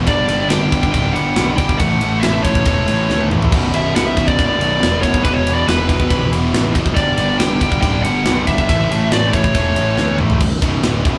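A stack of guitars and a growly, overdriven bass open this relentless heavy metal fragment at 140 BPM in B minor, cut from a longer piece. Two picked distorted guitars, one tight and one high-gain, sit in the background on the riff, with a double-tracked fuzz guitar tucked very quietly beneath them; the fuzz guitar drops out at 10.4 seconds. Up front, a tight acoustic metal kit with bright cymbals, a medium-tuned snare and a tight kick drives the straight 4/4 feel, adding fills at 3.1 and 10.0 seconds. Above it all, a dark, high-gain lead guitar carries the melody in a higher register over a G5, A, B minor, E5 progression. The band sounds as if playing live in one room, with moderate studio reverb giving the heavy mix some air.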